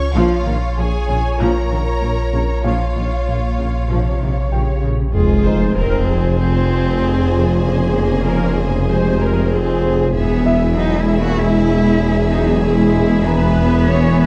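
Cinematic hybrid orchestral and electronic film score with a vast, futuristic mood, cut from a longer piece: lush bowed violin sections carry a background melody and a focused second line over vibrato-rich violas, while a mellow French horn section holds sustained chords in the background and a very quiet, present grand piano adds texture. The low end stacks a round sine sub bass, a hushed solo tuba, a focused double bass section and a dark cello section with portamento. At 5.1 seconds a huge, bright sub drop lands as an impact and a single expressive cello enters with an expressive, soft-attack melody, all set in a moderate scoring-stage reverb with a dark production.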